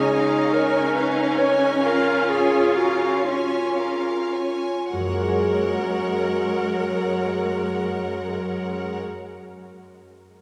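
Uplifting and moving, this short cut from a longer cinematic film score for orchestra drifts in a rubato 6/8 at roughly 34-51 BPM in F# major, slowing through its first 4.9 seconds before settling from A#m7/C# onto a glowing F#add9. A mellow solo clarinet and a clear, bowed violin section with vibrato carry the second lines, while a lush, up-front viola section with a smooth top provides the accompaniment and a rich cello section anchors the bass. A thumb-plucked concert harp rings out arpeggios until 9.5 seconds, all bathed in a wet cathedral reverb that lends the sound the space of a church or concert hall.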